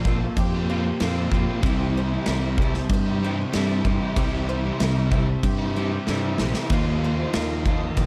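A growling, overdriven fingered bass and a punchy, up-front rock drum kit with bright cymbals drive this blissful, dreamy shoegaze and dream pop excerpt at 95 BPM in C mixolydian, with the drums entering at 0.1 seconds and a fill landing at 6.1 seconds. Behind them, three overdriven guitar riffs blend into a hazy wall: a crunchy part trailed by reverse reverb, a double-tracked semi-hollow guitar, and a raw garage guitar soaked in lush chorus, all moving from Bbsus2 to C and then Ebsus2. A shimmering, octave-doubled twelve-string acoustic picks arpeggios through ensemble chorus and tape echo, while a very quiet, detuned wavetable pad warbles and morphs with sustained chords in a dark, small-room production.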